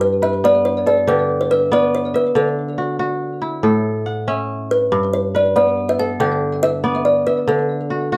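A woody, hollow-toned kalimba carries the melody up front, its short thumb-plucked notes trailed by tape echo, while a bright, crisp kora fingerpicks ringing arpeggios alongside it from 0.0 to 8.2 seconds. This flowing, warm West African string piece moves at 94 BPM in a straight 12/8 in G lydian, tuned to A4 = 435 Hz, cycling through G, D and A chords. A dark production and moderate studio reverb frame this brief excerpt from a longer work.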